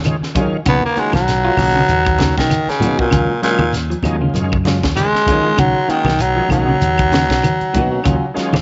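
A swung 16th-note groove at 98 BPM in 4/4 drives this hypnotic, intense afrobeat passage, cut from a longer piece, with a tight funk kit (high-tuned snare, tight kick, hi-hat), close dry low-tuned congas, woody claves and a grainy shekere pulsing under a round, punchy fingered electric bass that enters at 0.2 seconds. Up front, a raspy, gritty baritone saxophone solos with tape echo over a vamp alternating Ebm11 and Bmaj9. Behind it sit a clean picked semi-hollow guitar playing arpeggios, a darker fingered semi-hollow guitar adding stabs through spring reverb, and a very quiet, lightly overdriven tonewheel organ with key click and slow rotary swirl, all in a small, lightly reverberant room with a rolled-off top.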